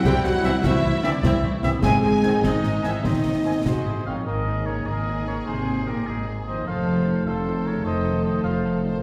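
Punchy, dark French horns hold chords beside close, dry snare, bass drum and clash cymbals, a shadowy solo clarinet and an airy flute section until the horns drop out at 4.0 s and the drums at 3.8 s, while from 0.4 s a clear trombone section sustains chords and a soft-attacked solo trumpet adds stabs in this adventurous, soaring 6/8 cut from a heroic film score. A very quiet, expressive violin section carries the melody over a lush, distant second violin line, a roomy oboe, focused violas, ringing fingerpicked harp arpeggios, smooth cellos and a warm double bass section, all set in a reverberant concert hall.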